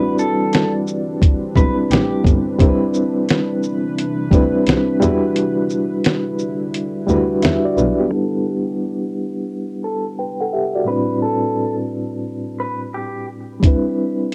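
A dusty, sampler-style soul drum kit sits up front in this nostalgic, melancholic lo-fi hip hop piece at 87 BPM, its thumpy kick and fat snare gritty and compressed alongside hi-hat and shaker, with a relaxed swing on the 16ths. The drums drop out at 8.0 seconds, after the kick falls silent for a stretch, and return briefly at 13.6 seconds. A reedy electric piano with fast tremolo carries the accompaniment throughout, clean and close through its built-in speakers, moving through Am11, Cmaj9 and Em7 before passing through Em9, Am11 and Cmaj9 in the second half. Beneath it, a bowed double bass adds a smooth, rich line with gentle vibrato, while a deep, moody pad of detuned saws and sine sub octave holds slow-attack sustained chords with chorus through the first half. A dark, slightly broken-up electric guitar from a small old amp offers a few picked melodic notes at the opening and comes back at 8.1 seconds with spring reverb, as a filter sweep colours the later section and cassette tape softens the whole home-recorded sound.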